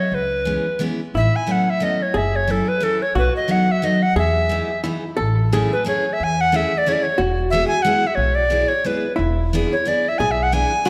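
A bright tenor recorder leads this nostalgic, charming musette waltz, its airy, wooden tone up front with vibrato, a crisp chiff on each attack and lifted highs. The tempo runs at 179 BPM in 3/4 with a swung, rubato feel, starting in E major and moving to A major at 5.2 seconds, in a short cut from a longer piece. Beneath the melody, a pizzicato upright bass with gut strings gives a woody, thumpy low end, while a jumbo steel-string acoustic guitar, full-bodied and picked on fresh strings with audible finger squeak, supplies the accompaniment. A clean, compressed hollow-body archtop guitar, miked and amplified, enters at 1.1 seconds with a dark second line coloured by tape echo. The whole ensemble sits in a wet recital hall reverb, and the harmony moves through jazzy sevenths and sixths before settling onto E and E7 near the close.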